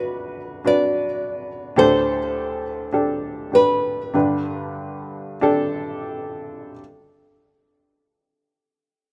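A fingerpicked nylon-string guitar carries the melody up front, its bright, fresh-stringed classical tone moving within a narrow register from B4 to D5. Beneath it, a woody upright piano plays the accompaniment, also close and present, with a slightly detuned character and short sustain across a span from D2 to B4. This tender, heartfelt pop fragment is in G major at a slow 42-56 BPM in straight 4/4, tuned to A4 = 436 Hz, and the tempo slows down throughout. The harmony moves from Bm/D to Dsus4 at 1.8 seconds and settles on G at 4.1 seconds. The guitar stops at 6.1 seconds while the piano carries on to the end, heard through light reverb in a rough home demo mix.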